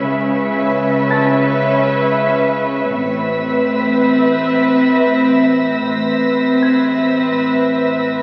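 Heard through the crackle of a very old 78 rpm record and a recital hall's reverb, this short cinematic excerpt at 82 BPM in 4/4 has a mysterious, ominous air. A dark, woody violin section carries the melody with vibrato, bowed sul tasto and sounding distant, while a second violin section adds a smooth, floating line above the viola section's close, rich accompaniment. Underneath, a cello section and an intimate double bass section with light vibrato hold the bass, and a soft organ-like pad with ensemble chorus and its own reverb sustains chords in the background. A very quiet, vintage grand piano adds high texture, and from 2.9 s a third, distant violin section joins with a pure texture high above. The harmony moves from C#m7 to Amadd9 at 2.9 s, and the tuning sits slightly below standard pitch, at A4 = 437 Hz.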